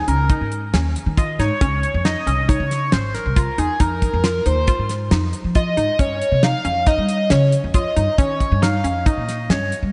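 A dreamy, reverb-soaked mix with a softened top end frames this driving, intricate stretch of progressive instrumental music, moving in 5/4 at 137 BPM through chords such as Eb7sus4, Dbmaj7 and Fm7. Up front, a gritty, screaming synth lead with a guitar-like bite carries the melody through distortion, phaser, analog delay and vibrato, while a hollow, bouncy square-wave pluck with chorus spins bright arpeggios beneath it. A woody pizzicato upright bass and a dry, damped 70s drum kit with a fat snare and tight kick drive the groove from start to finish of this short cut from a longer piece.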